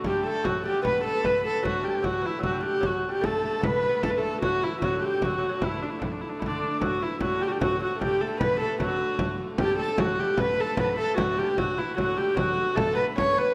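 A close, up-front viola carries the tune in this festive, ancient-sounding medieval dance in triple time, its bowed tone soft in attack, airy and nasal, with vibrato giving it an intimate, boxy character. Beneath it, a deep frame drum played with hard hands keeps the dance moving, its large sound kept close and dry. A bright, folk-style shawm sings a second line high above, while a delicate fingerpicked lute with gut and double strings adds another line from the background. A clear, biting hurdy-gurdy holds an earthy drone low in the mix, its wheel-bowed sound nasal and airy. The passage is heard twice, restarting at 7.2 seconds, and the whole ensemble sits in a wet recital hall reverb in this short excerpt cut from a longer piece.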